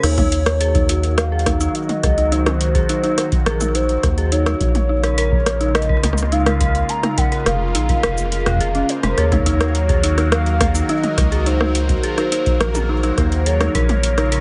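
A rubbery, bouncy square bass with tube saturation anchors this eerie, melancholic IDM excerpt in Eb dorian at 105 BPM, moving between Ebm and Bbm7 beneath a warbling, nostalgic lead melody coloured by analog chorus, cassette tape and delay, a swirling phased analog pad holding airy sustained chords, an inharmonic detuned synth bell tracing arpeggios through chorus, tremolo and delay, an up-front electro analog drum machine with metallic hats, rim clicks, shaker, toms and crash, and a deep electronic kick, set in a dry, dusky mix.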